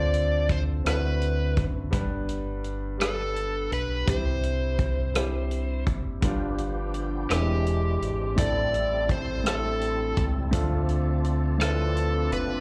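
Heard through a live club's PA with a light room reverb, this slow, hopeful and reverent gospel piece in 6/8 at 56 BPM features an up-front, overdriven slide guitar played with fingerpicks and carrying the melody with slapback echo, over a natural-sounding grand piano (also with slapback echo), a dark, round fingered electric bass, and a dry soul drum kit with a punchy kick, hi-hat and rim click, while a full tonewheel organ with slow rotary speaker, light overdrive and chorus vibrato adds sustained chords from 6.2 seconds as the harmony moves from Dm7 through G7, E7alt and Am7 before returning to Dm7.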